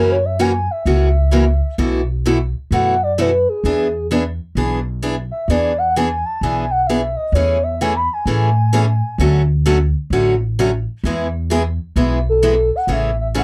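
Acoustic string swing in the jazz manouche style, charming and playful, this excerpt from a longer piece sets a breathy, gliding sine lead with warbling vibrato, chorus and slapback echo over a bright, boxy picked steel-string acoustic guitar, finger squeaks included, and a woody, thumpy pizzicato upright bass, all in a dry, close 1970s-style studio sound with light reverb, as the lead's melody drops out at 9.3 seconds and returns at 12.3 seconds.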